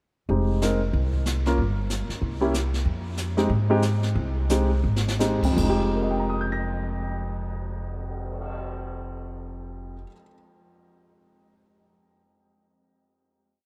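From 0.3 s, a polished, up-front concert grand piano with syncopated comping in rootless voicings, a woody, thumpy upright bass in a two-feel, and a brush kit of snare sweeps, dark cymbals and a boomy kick play a moody, smoky swing piece in F minor at 159-188 BPM, slowing from 2.9 s through a brief drum fill to a final chord at 5.6 s that rings on in a vast, echoing cathedral space.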